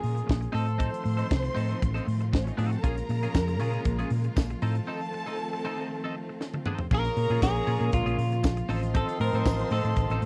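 A tight funk drum kit with a high-tuned snare and dark cymbals drives a straight 118 BPM disco groove in Bb minor, anchored by a round, dark hollow-body bass up front, while a bright, twangy twelve-string electric guitar plays accompaniment over chords moving between Bbm7 and F7. A lush violin section with expressive vibrato carries a second line above a distant, focused string section holding sustained chords, and a jingly tambourine joins at 3.3 seconds; after a break and a drum fill, a clean, picked electric guitar melody returns at 6.9 seconds alongside tight vintage horn stabs. The dry, close 1970s-style studio sound gives this glamorous, danceable excerpt from a longer piece an intimate punch.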